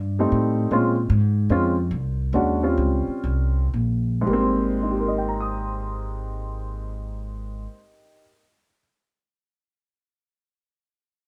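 This is a swinging jazz piano trio passage, cut from a longer piece, with a sophisticated mood and a swung eighth-note feel in four. An acoustic upright bass, plucked with a woody, steel-string tone, sits up front and carries the low line from the start until 7.7 seconds. A baby grand piano joins almost at once with the melody, its tone natural and warm with a short sustain, and continues until 8.8 seconds. The tempo slows through the first half, easing into the second section at around 4.3 seconds, as the harmony moves from a rootless F9 through Bbm9 and Eb13 to settle on Abmaj9. A moderate studio reverb gives the two instruments a close yet roomy sound.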